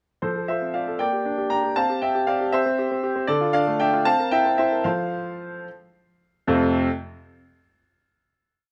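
A straight 6/8 pulse of 72-79 BPM, counted in dotted quarters, carries this graceful, elegant classical-period piano sonatina in F major, a complete piece lasting just a few seconds. A solo concert grand plays from 0.2 to 6.9 s, spanning F2 to Bb5, with a tune in thirds over a broken-chord bass. The harmony moves from F through Gm/Bb, C, Dm and C7 before settling on F at 4.8 s. The tone is clear and open, the low register deep, and the instrument sits up front in light reverb.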